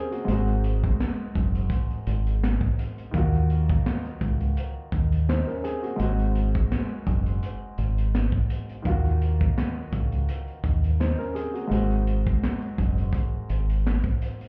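An 84 BPM boom-bap groove in 4/4 with a light swing on the sixteenths drives this dark, reflective hip-hop excerpt, built on a crunchy breakbeat kit of punchy kick, medium-tuned snare, hi-hat and handclaps whose saturated, gritty sound has a rolled-off top and sits up front. A deep, round dub fingered bass holds the low end up front, while a mellow concert grand piano, filtered and intimate with audible action noise and a vintage character, cycles between Ab7 and Ebmadd9 chords. The whole mix sounds muffled, as if heard through a wall from a small club room.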